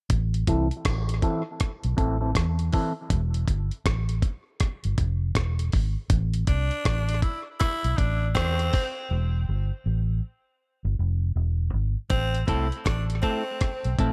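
This is a meditative, hypnotic dub reggae groove at 80 BPM in A minor, cut from a longer piece, opening with a dark, round, foam-muted electric bass sitting up front alongside a compressed, sampler-style drum kit of hi-hat, thumpy kick and rim click, all with a gritty, dusty character and a swung sixteenth-note feel. A clean, picked semi-hollow electric guitar adds brief hollow-body accompaniment through phaser, low-pass filter and tape echo, appearing only from 0.5 to 2.9 seconds before returning near the close. At 6.5 seconds a raspy tenor saxophone takes the second line, edgy and close-miked with vibrato and scooped notes, its phrases trailed by tape echo. The harmony moves slowly between Am, Em and A5, with a break from 9.1 to 12.1 seconds before a new section settles back on Am. The mix is dry in room sound but heavy with echo, keeping the atmosphere trance-like.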